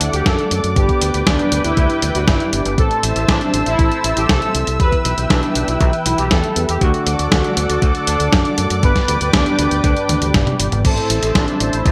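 A bold, fat analog synth brass carries the melody with chorus, cassette-tape coloring and digital delay in this danceable, nostalgic italo disco excerpt at 119 BPM in A dorian, set over a thick, airy unison pad with chorus and phaser, round stabs from a mellow synth brass in the background, a bright, growly fingered electric bass, a gritty, up-front sampler-style soul drum kit with gated reverb and a fill at 10.1 seconds, and a thumpy electronic kick that enters at 0.3 seconds, within a bright 1980s-style digital production bathed in plate reverb.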